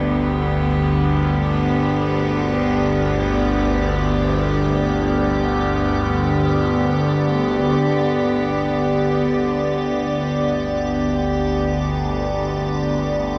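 A rich, nasal cello section with a reedy gut-string tone and shimmer reverb sustains bowed chords over a resonant, overtone-sweeping synth drone treated with chorus and phaser, an icy, crystalline glass pad joins at 1.1 s, and a fade-in on the drone runs from 7.8 s in this desolate dark ambient drone in free time and G major, cut from a longer piece and steeped in cathedral reverb.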